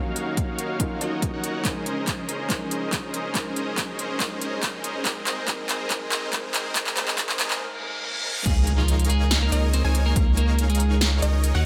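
A huge, detuned supersaw riff carries this bittersweet, lush half-time future bass cut from a longer piece, filtered and pumping over a thick, saturated sub bass while a soft, felt-muted upright piano with audible action noise plays accompaniment, and a punchy electronic kick joins an up-front dance kit of crisp hats, handclaps, snare and crash. Very quiet riser, reverse cymbal and impact effects sit in the mix; a filter sweep and drum fill shape the build-up, a brief break with the reverse cymbal arrives at 7.6 seconds, and the impact marks the drop at 8.5 seconds. There the piano gives way to a bright, twangy, slightly broken-up electric guitar melody in spring reverb and background arpeggios from a detuned unison pluck, all set in light digital ambience.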